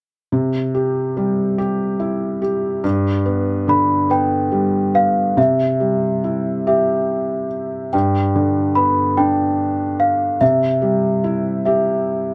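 A bell-like, delicate large celesta carries the sleepy melody from 3.7 seconds over a soft, felt-muted upright piano that opens the accompaniment alone, its mellow tone sitting up front with audible action noise, in this gentle children's lullaby in a rubato 6/8, given a dark production and light reverb, and cut from a longer piece.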